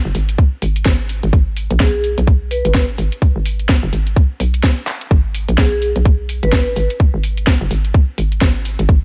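A tight, overdriven electronic kick drum sits up front and drives this gritty, bouncy bass house track at 127 BPM in 4/4, with a swung 16th-note feel in G# minor. Beneath it, a hollow, knocking FM bass with a fast attack and dark decay punches through in the low register, gritty with overdrive and pumping through sidechain compression. A layered garage kit adds handclaps, hi-hat and a cracking snare, also driven into distortion, and a drum fill arrives at 4.9 seconds. A vibraphone played with medium mallets offers brief metallic, ringing phrases at 1.8 and 5.6 seconds, close-miked and full with a fast motor vibrato, its notes trailed by digital delay. The mix has little reverb and feels close, and the clip is cut from a longer piece.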